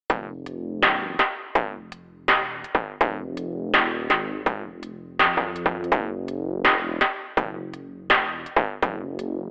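A half-time drum and bass groove sits at 165 BPM in 4/4, its sixteenths carrying a swing of 57%, and the mood is tense and heavy in F phrygian. An electronic kick drum, distorted and up front with a tape-warm edge, anchors the pattern from 0.1 s to 8.9 s. Beside it, an industrial drum kit adds a clanging snare and crisp hi-hats, also produced, electronic and forward in the mix, running until 9.3 s. Beneath them, a dark detuned saw bass rumbles between F1 and F2, its unison sawtooth voices beating alongside a sine tone, with a fast attack and long sustain, sitting lower in level than the drums and holding until 9.5 s. The whole recording has a telephone-like tone with light reverb and a digital ambience, and this short piece is cut from a longer track.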